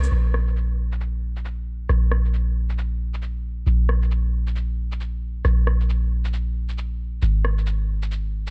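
A nocturnal, wistful future garage excerpt in a swung 4/4, where a deep, round, sine-like 808-style bass with a fast attack and tube-saturated darkness sits up front from Ab1 to C2, while a quieter, low-pass-filtered electronic shaker and rim click tick beneath it, all captured dry and gritty with a cassette-tape grain.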